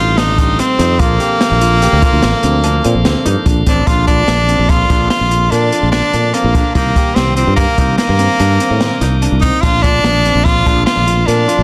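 A driving, bright progressive instrumental in 7/4, led by an edgy tenor saxophone with light vibrato, scooped notes and a touch of delay, up front over a growly fretless bass, a dark, mellow baby grand playing delayed arpeggios and a piping tonewheel organ with key click through a stopped rotary speaker, both set back, while an open jazz kit with a boomy kick and a rolled-off top joins at 0.2 seconds, all in light reverb and a dense, heavily limited modern master.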